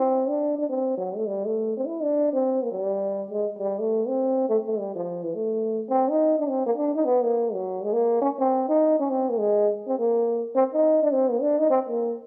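Relaxed and swinging, this excerpt of up-tempo jazz at 206 BPM features a lone cup-muted trombone playing a veiled, breathy solo with scooped notes between E3 and E4, settling into Bb major from 5.9 s, with the horn heard from further back in a large studio's moderate reverb.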